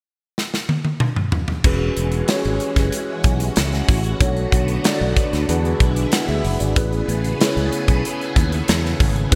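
A drum fill on a tight, up-front studio kit with gated reverb opens this breezy, upbeat slice of polished 1980s jazz-funk pop at 94 BPM in E major. At 1.6 seconds a punchy, bright fingered bass, a mellow tine electric piano with ensemble chorus, and a swirling, phased string machine holding slow-attack sustained chords all arrive together. They move through E69, Bm7, E7 and Amaj9 under a light studio ambience and glossy digital sheen.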